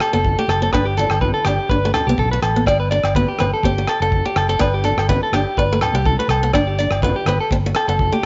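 Highlife guitar band music with a sunny, carefree mood, this short cut from a longer piece rides a lightly swung 4/4 groove. Up front, a clean, compressed electric guitar plays picked arpeggios coloured by a warbly pitch drift and slapback echo, while a woody, boxy parlour acoustic guitar with old strings picks a quieter accompaniment. Underneath, a dark, round fingered electric bass enters at 0.1 seconds. A cloth-damped, thuddy drum kit with a tight kick and a rolled-off top plays hi-hat, kick and rim click. Ringing agogo bells, which stop at 7.9 seconds, and warm, low-tuned, thick-skinned congas heard from a distant, larger room sit in the background. The harmony moves from G to Am and back to G between chordless moments at the start and end, all set in light reverb and small room ambience with a soft, mellow top end.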